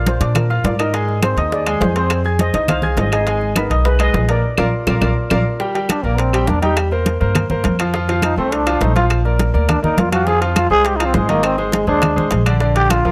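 A close, dry and detailed sound frames this sunny, festive salsa excerpt at 206 BPM, where a shimmering steel pan carries the melody until 5.4 seconds over a brilliant, up-front concert grand piano with audible action noise and a thumpy, gut-strung upright bass. Congas, tight high-tuned bongos and woody claves sit in the background alongside ringing metal-shelled timbales as a band accent and drum fill lead into a growling trombone solo at 5.6 seconds. The trombone, raspy and up front with vibrato and scooped notes, rides chords moving from Bb69 through C7/E and F back to Bb.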